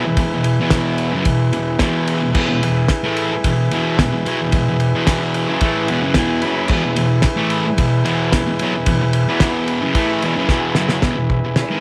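A thick, double-tracked fuzz guitar riff opens this rowdy, raw garage rock cut, sitting up front and bright, with a reedy, overdriven combo organ holding sustained chords above it in a light vibrato. A cloth-damped drum kit comes in at 0.2 seconds, thuddy and acoustic, with a fat snare, a tight kick and dark crash and ride cymbals in a small-room sound with a rolled-off top. The tempo is a straight 111 BPM in 4/4, anchored in E major and tuned slightly under standard pitch. The organ's vintage transistor tone comes through in a fill at 5.6 seconds, and the drums play their own fill near the end at 10.5 seconds. Light studio reverb frames the whole excerpt, which is cut from a longer piece.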